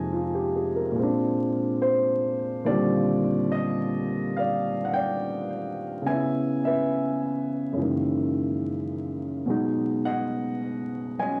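A 70 BPM swing in 4/4 carries this late-night, smoky solo jazz fragment, cut from a longer piece, where a woody, polished upright piano sits up front with long sustain and a touch of tape echo, moving from Fm7 through Bb9 and Ebmaj13 to Dbm7, Gb13 and B6 over 11.4 seconds, all wrapped in the soft haze of a home cassette recording with vinyl crackle and a small, intimate room.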